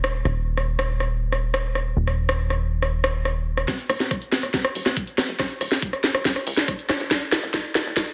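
Hypnotic and psychedelic, this short cut from a longer psychedelic trance track runs at 140 BPM in Eb minor, with a punchy, wave-folded analog bass pluck up front beside a cracking snare and bright hats, until a knocking electronic kick enters at 3.7 seconds alongside a drum fill and build-up under light reverb and a dense, heavily limited master.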